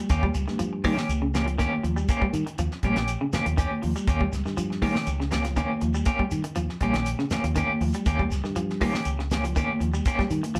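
A slightly broken-up, twangy electric guitar opens this joyful, hypnotic afrobeat excerpt with tremolo-laden arpeggios, joined almost at once by clean, picked guitar stabs also treated with tremolo, a warm fingered bass up front, and a dry, damped 70s drum kit with a fat snare and tight kick. Grainy, mellow shekere and ringing, high-tuned congas struck with hard hands sit in the background, while the groove holds a single Eb7 chord in Eb mixolydian at 120 BPM. The band sounds as though it is playing live together in a small room with moderate reverb.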